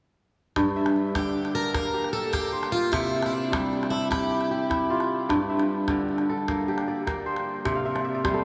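A fingerpicked kora and a small calabash open this reflective, flowing fragment of West African string music at 0.6 seconds, set in a straight 12/8. The kora plays mellow, ringing arpeggios that sound crisp and up front, spanning a broad range and trailing a diffuse ambient delay. At 1.2 seconds a picked, plugged-in swing-style acoustic guitar enters with a brief, boxy melody in a narrow middle register, colored by lush chorus and its own ambient delay. The calabash sits low beneath them in a small-room space. The harmony moves gently between Gm and C, and the kora adds a short fill at 7.8 seconds. The whole mix is soaked in a huge, dreamy reverb, giving the cut-off passage a suspended, floating quality.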